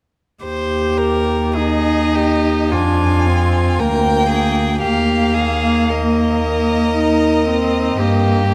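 A close, focused first violin carries the melody from 1.6 s, its bowed line sung with vibrato high above the rest of this serene, tender slow movement for string quartet. Beneath it, a second violin with a clear, more distant tone holds a supporting line, having begun with the lower strings at 0.4 s. The viola fills the accompaniment with a dark, intimate sound, its soft attack, airy bow and light vibrato giving the middle of the texture a gentle glow. Up front, the cello anchors the bass with a rich, even tone and light vibrato. The rubato pacing lets the phrases breathe, and a moderate concert hall reverb of about 2.5 seconds surrounds the ensemble in this brief passage cut from a longer piece.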